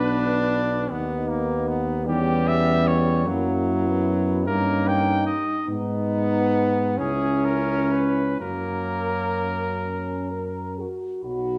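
In a rubato 6/8 lilt, this serene, lyrical excerpt of a hymn-like classical brass band piece sets a present, up-front cornet melody with vibrato over a dark French horn section carrying a punchy second line in the background, a bright, distant trombone and a warm euphonium filling out the accompaniment, and a mellow, soft-attacked tuba anchoring the bass up front, all in a reverberant recital hall with a dusky production.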